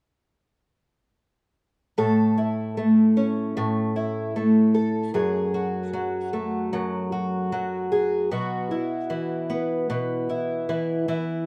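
A fingerpicked twelve-string acoustic guitar enters at 2.0 s and carries this short pop fragment on its own until it stops at 11.5 s. The mood is heartfelt and carefree, set at an unhurried 76 BPM in a straight 4/4 feel. The guitar sits up front with a dark, woody tone from old strings, and its octave-doubled courses add a shimmering edge to the boxy body. It plays an accompaniment over the chords A, F#madd9 at 5.1 s and Bsus4 at 8.3 s, reaching from F#2 up to A4. A moderate small-room reverb gives the instrument a close, intimate sense of space.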